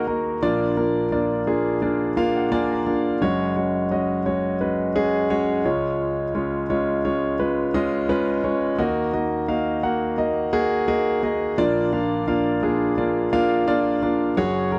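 A dry, close, 1970s-style studio sound with modest booth ambience frames this dramatic, driving pop excerpt at 86 BPM with a light sixteenth-note swing, where a solo concert grand piano, intimate and up front with deep bass, long sustain and audible action noise, plays a fill from 1.8 to 3.2 seconds and moves through Bb, Gbsus2, Db and Ebm before returning to Bb.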